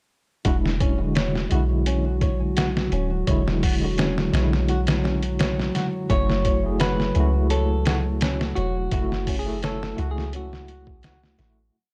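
A muffled, thumpy sampler-style drum kit drives this dark, brooding trip hop piece at 85 BPM in F# minor, playing a compressed, pitched-down looped breakbeat with edits up front beside a deep, round 808-style bass on a dub-style line, while a worn, slightly out-of-tune tine electric piano with overdrive, tremolo and tape echo holds close-voiced chords with syncopated pushes. A nasal, detuned analog pad sits in the background with a held high note, and a fingerpicked flamenco guitar carrying sampler grit repeats a 6-step arpeggio loop that drifts against the bar. At 6.1 s, as the harmony moves from E7 to F#m7, a clean hollow-body electric guitar enters with a motif-based melody, before the dry, cassette-toned recording fades out from 8.0 s.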